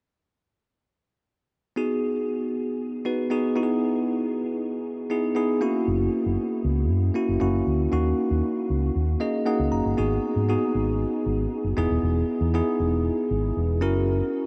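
In a straight 4/4 pulse, this short cut from a longer 1980s-style pop piece drifts along in a nostalgic, moody haze. A bell-like tine electric piano opens the accompaniment at 1.8 seconds, its clean, bright, direct tone sitting up front and carrying the harmony through G#m7, Emaj7, F#7 and D#m7. A fingered electric bass joins at 5.9 seconds, round and dark with an amped edge, placed close in the mix. Shortly before the second section begins at 10.0 seconds, the electric piano plays a brief fill, and the progression then returns to its opening chords. The whole sound is soaked in a huge, dreamy reverb with a long tail, and its top end is rolled off for a soft, hazy finish.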